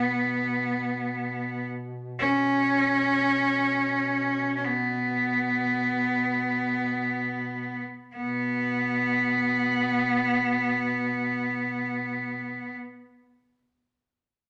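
Solemn and mournful, this short excerpt from a longer Caucasian lament unfolds in free time, easing and slowing from 0.4 to 8.2 seconds before a second passage carries it on to about 12.2 seconds. A single bowed cello sits up front with a bright, intense, vibrato-laden tone that still feels distant as it sings its melody, while a mellow duduk, played in folk style with a soft attack, scooped notes and its own vibrato, holds a low drone far beneath it throughout. Both voices float in a large studio's moderate reverb.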